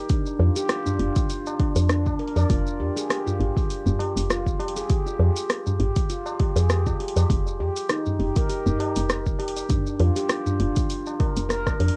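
Organic downtempo with a meditative, gently swung 4/4 feel, taken from a longer piece. A stainless steel handpan carries the arpeggios throughout, mellow and ringing under soft fingertips, close-miked and dry yet full, with an analog delay trailing its notes. A woody FM bass sits up front with a dark, round tone, fast attack and decaying notes, pumping against an electronic kick that is deep, layered and placed forward. A produced deep house kit of hi-hat, rim click and shaker, re-recorded in a small room, joins a low-tuned tabla with a short, acoustic ring. The harmony moves from a rootless G7(no3)/F to Fsus2 at 2.5 seconds and returns at 9.7 seconds, before a drum fill closes the passage at 11.5 seconds. Light reverb and the soft haze of a home cassette recording give the whole a warm character.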